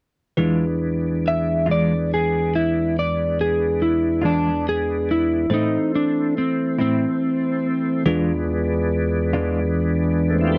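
A dry, close studio sound in a 1970s vein, with a moderate booth ambience, frames this smoky, soulful blues fragment cut from a longer piece, set in a slow, straight 12/8 feel. A tonewheel organ sits up front with smooth, sustained chords, colored by a slow rotary speaker and chorus vibrato. Beside it, a fingered, compressed clean electric guitar with a warm tremolo shimmer joins a bell-like tine electric piano, whose bright, clean voice comes through its built-in speakers, both playing accompaniment from 0.4 seconds. At 1.3 seconds an electric slide guitar takes the melody up front, its fingered, compressed tone dark and slightly broken-up, carrying the line until 8.0 seconds. Underneath, the harmony moves from E7b9 to A minor and back to E7b9.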